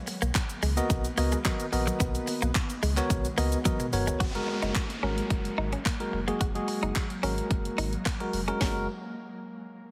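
Heavily compressed with a radio-like sheen and light reverb, this euphoric, upbeat dance-pop excerpt at 109 BPM in F# major sets a punchy, up-front house kit of handclaps, hi-hat, kick, shaker, cracking snare and toms under a bright, picked clean electric guitar riff with analog chorus, a round sine sub bass and a tine electric piano, both pumping with sidechain, and an ethereal detuned pad shimmering with tremolo in the background, while a drum fill at 3.7 seconds leads into an electronic downlifter from 4.2 seconds as the chords move from Bmaj7 to F#add9.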